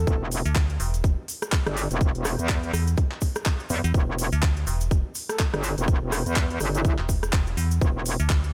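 Bass house with an aggressive, bouncy mood and a swung sixteenth-note feel, this excerpt is cut from a longer piece and runs as a single section. Two up-front basses carry the weight: a digital FM bass with a fast attack and decaying notes, driven through overdrive and sidechain pumping, and a wobbling, saturated bass that sounds bright and compressed, thickened with chorus and also pumping. A tight electronic kick sits up front, joined by a layered garage kit of handclaps, rim clicks and crisp hi-hats, both tape-warmed and re-recorded in a large room. A grainy tube shaker sits in the background. A soft, breathy flute-like lead with vibrato and a sub octave floats at a distance, heard only in a brief flicker at the start and again from 5.3 to 6.9 seconds, colored by lush chorus, cassette tape and tape echo.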